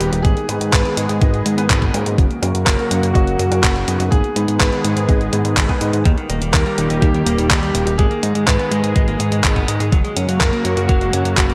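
A straight 4/4 italo disco groove at 124 BPM in G# minor, bittersweet and melodramatic, rides a thumpy, sampler-style electronic kick, clean 12-bit drum-machine handclaps and hi-hat in gated reverb, and a fat, detuned sawtooth analog bass beneath a smooth, warbling chorused pad and an intimate concert grand piano melody with audible action noise and digital delay, while delayed baby grand piano stabs drop out at 6.0 seconds as bright, compressed, clean electric guitar arpeggios with spring reverb enter in the background at 6.1 seconds, all cycling through G#m, F# and D# in a bright 1980s-style digital production with moderate plate reverb.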